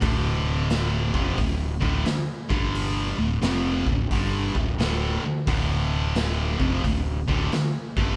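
A thick, double-tracked fuzz guitar riff drives this short, heavy and smoky blues rock and southern rock snippet, bright and distorted and sitting up front as it moves from Dm to G5 and back. A fingered electric bass plays underneath, amped and growly, beside a raw garage drum kit whose punchy kick, medium-tuned snare and hi-hat sound saturated and gritty, with a rolled-off top and a pumping, stone-room ambience. The swung 4/4 groove comes across like a power trio playing live in one room with light reverb.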